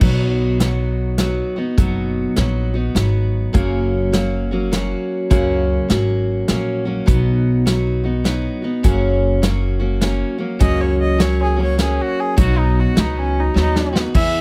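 A picked, full-bodied acoustic guitar, a woody, thumpy upright bass and a natural country drum kit with dark cymbals and a punchy kick open this nostalgic, down-home honky-tonk waltz in B major, swinging at 102 BPM in 3/4 and moving between B and F#. A smooth, rich fiddle with light vibrato joins as a second line at 10.6 seconds, and a drum fill at 13.6 seconds closes this short cut from a longer piece. The close, detailed recording carries little reverb and keeps the guitar, bass and drums up front.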